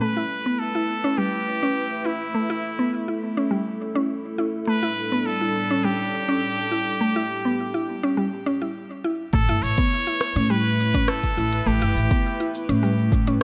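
Earthy and warm, this organic downtempo piece in A mixolydian moves at 103 BPM in a straight 4/4. A nasal, up-front trumpet with a straight mute carries the melody through delay, over a lo-fi, nostalgic tape-like pad that pumps under sidechain and a round, woody mallet-like synth pluck spinning chorused arpeggios. After a break at 8.2 seconds, a growly pizzicato upright bass, a deep electronic kick and an afro-pop kit of smooth hi-hat, rim click and shaker enter at 9.3 seconds, all set in a moderate echo chamber reverb over A7 and G5/A chords.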